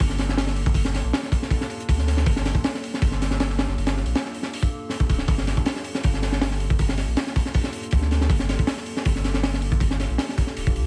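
Nostalgic yet frenetic, this drum and bass and jungle piece, cut from a longer work, runs at 159 BPM in a straight 4/4 and stays on a single Gm9 chord in G minor throughout its roughly 10.9 seconds. Up front, a crunchy breakbeat drum kit of hi-hat, kick drum and snare drum sounds acoustic and gritty, with a high-tuned snare, a tight kick and a rolled-off top. Beneath it, a saturated sub bass plays deep, thick tones between D1 and D2, with tube saturation, a fast attack and sustained notes. In the background, a warbly, lo-fi tape-like pad holds detuned, vintage chords from Bb3 to A4, its slow attack and long release softened further by chorus and built-in reverb. The overall sound is dry, with little reverb, and a layer of vinyl crackle runs across the track.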